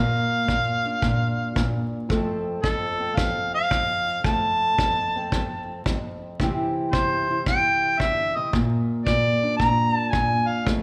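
A mellow harmonica and a fingerpicked steel-string acoustic guitar open this short cut of rollicking, laid-back acoustic country blues, with a kick drum joining at 0.5 seconds. Set in F major at 112 BPM in 4/4 with swung eighths, the piece moves from Bb to F, then to C and back to Bb. The harmonica carries the melody up front in a vintage, jazz-tinged style, colored by light vibrato and scooped notes. Beneath it, the guitar's dark, concert-style accompaniment sits close. The tight kick drum adds a warm, rolled-off pulse. A moderate recital-hall reverb and a layer of vinyl crackle give the recording the air of an old hall performance.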